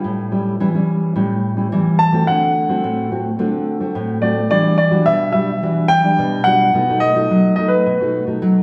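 This lively, playful samba moves at 108 BPM, with a dark, thumb-plucked nylon-string guitar setting the classical-flavoured accompaniment over A7 and D7 before the music settles into E minor at 4.5 s on Em9 and B7. A concert grand piano with a clear tone and deep bass carries the melody from 2.0 s; both instruments sit up front. A recital-hall reverb gives this short cut from a longer piece a lush, spacious finish.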